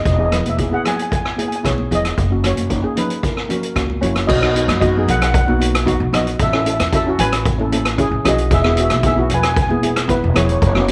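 Calypso at 114 BPM in B major, bouncy and sunny, in a short passage cut from a longer piece. A double-seconds steel pan carries the melody, played with medium rubber sticks for a metallic, shimmering tone with a boxy small-room color and a slapback echo. Beneath it, cello pans struck with soft rubber sticks give a mellow, mid-forward accompaniment, while a pizzicato upright bass on steel strings sounds woody, growly and thumpy. A street-band drum kit sits up front with a boomy kick, rolled-off top, hi-hat, rim click and crash cymbal, and high-tuned congas played with hard hands ring in the background with a vintage, band-limited quality. The harmony moves from E to F#, then shifts at 4.3 seconds to B, A and Eadd9, all set in a moderate spring reverb with small room ambience.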